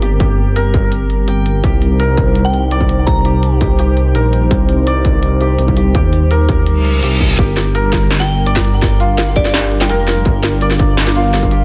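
A half-time drum and bass groove in 4/4 drives this heavy, spacious passage, cut from a longer piece. A distorted electronic kick sits under an industrial kit of clanging snare and crisp hats, both sounding re-recorded in a small room. Up front, a detuned sawtooth bass rumbles and beats with saturated grit, while a moody analog pad holds sustained chords through chorus and sidechain pumping. A hammered santur spins shimmering, ringing arpeggios through digital delay, and a crystalline FM synth bell adds brief melodic phrases from 2.4 seconds, coloured by chorus, phaser and delay. A reverse cymbal rushes in at 6.8 seconds, just before the harmony moves from C minor back to G minor at 7.4 seconds, all inside a light reverb.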